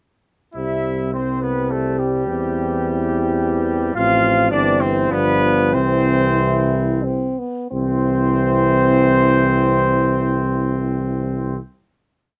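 Noble and stately, this short, complete piece for brass quintet unfolds in a flexible, rubato triple metre. A mellow, vintage-toned trumpet carries the melody up front, while a second trumpet, clear and distant in a roomy space, doubles the tune at the octave from its entry at 0.5 s. French horn, with a gentle vibrato, and a soft-attacked euphonium sit in the background, playing chords in the rhythm of the tune and holding sustained harmonies, with the horn answering at phrase ends. The tuba stands forward with a smooth top, laying down sustained bass with passing notes. The music slows from 3.1 s and settles onto a held final chord at 7.7 s, all framed by light reverb in a dark, warm production.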